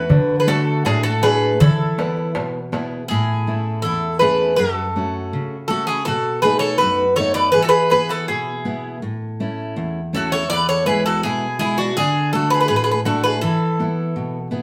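In a straight 2/4 at 81 BPM that speeds up, this hopeful Greek folk piece in A major puts a bright, metallic, picked bouzouki melody up front over a round mandolin second line and an up-front fingerpicked steel-string acoustic guitar, while a crisp, small, metal-shell darbuka plays only until 3.0 s, the band heard playing live in one room with wet studio reverb.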